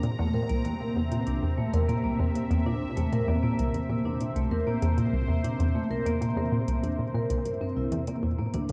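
A steady, straight 4/4 pulse at 97 BPM is set by a soft vintage rhythm box, its metallic hi-hat and toms sitting low in the mix and trailing tape echo, in this expansive, cosmic piece of sequencer-driven space music cut from a longer work. Up front, a round analog pluck built from detuned sawtooth and square waves with a noise layer repeats a low riff between C2 and Bb2, its fast attack and short decay carried by chorus and tape echo. From 0.2 seconds, a vibraphone played with medium mallets spins ringing, metallic arpeggios between A3 and Bb4, its slow motor vibrato and smooth, dark tone also echoing on tape. Behind them, a sweeping resonant pad of detuned sawtooth and triangle layers with ring modulation holds full-bodied, evolving chords from Bb2 to Bb5, its slow attack and long release wrapped in chorus, while a filter sweep moves across the synth arpeggio sound throughout. The harmony rests on C7 before shifting to Bbmaj7 at 8.1 seconds, all framed by a huge ambient reverb and a dark, warm production.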